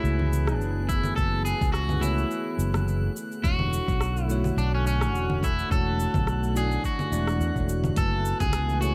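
Sunset chillout in F# minor at 106 BPM with a gentle 16th-note swing, this smooth, warm passage drifts from F#m11 to E13sus4 and back, cut from a longer piece. A bright, twangy electric guitar at the edge of break-up carries the melody through digital delay over bell-like tine electric piano, a lush detuned sawtooth pad with chorus, and a growly, up-front fretless bass with tube saturation. A deep house kit of cabasa, congas, dark hats and rim click sits under studio reverb, a deep electronic kick joins at 0.9 seconds, and a faint glassy texture of drifting overtones lingers in the background of the dark, lightly reverberant mix.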